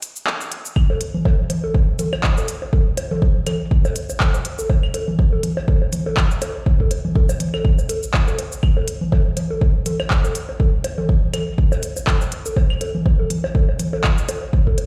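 Quirky and clinical, this techno excerpt opens with a layered, overdriven drum kit of cabasa, handclaps and smooth hi-hats, joined at 0.3 seconds by an up-front, deep electronic kick. At the 0.8-second drop, gritty analog claves, bongos and congas enter carrying dub echo, all set in a big, bare-room ambience with large studio reverb.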